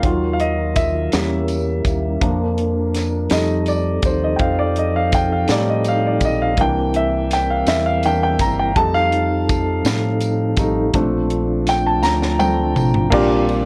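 A present, polished grand piano takes the lead in this uplifting, reverent slow gospel piece, backed by soft, flute-like tonewheel organ chords through a fast rotary speaker, a fingered electric bass with an envelope filter, a crisp fusion drum kit with a high-tuned snare that plays a fill from 12.0 to 13.1 seconds, and a jingly tambourine in the background, all colored by light reverb and the warbling pitch drift of worn cassette tape.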